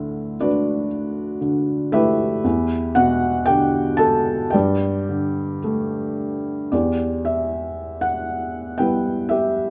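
A felt-muted upright piano sits up front in a moderate recital hall reverb, its tone soft, boxy and intimate, with the mechanical noise of the action clearly audible beneath each note. This is a short classical fragment cut from a longer piece, a lyrical solo in G major at a slow 58 BPM in 4/4, played with a rubato feel and tuned slightly low to A4 = 438 Hz. The mood is wistful and dark. The harmony moves from D6 through Em7 to Gsus2, and at 6.7 seconds a new section begins, settling on E minor. The single piano covers a range from D2 up to A5 across the roughly ten seconds of playing, its muted, mellow voice keeping the music close and private.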